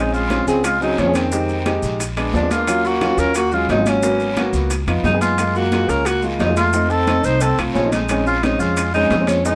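A breathy tenor saxophone carries the melody up front in this brief cut from a longer Afro-Cuban jazz piece in Bb minor, its subtone sound mellow and whispered, with vibrato, scooped notes and a soft attack that feel intimate despite a distant, roomy placement. Behind it, a growling trombone plays a raspy, gritty second line with its own vibrato and scoops, close-miked yet sitting in the background. A grand piano adds natural, warm accompaniment with audible action noise, while an upright bass plays pizzicato with a woody tone on steel strings. The percussion enters at 0.1 seconds with quiet, high-tuned congas that sound thick-skinned, damped and dry, alongside round, low-tuned bongos and close, grainy maracas; a distant guiro and ringing, metal-shelled timbales with a compressed, saturated edge come in at 0.3 seconds, and the timbales stop at 9.4 seconds. At a brisk 177 BPM in straight 4/4, the rich minor-ninth and altered-dominant harmony and light reverb give the passage a sophisticated, sultry mood.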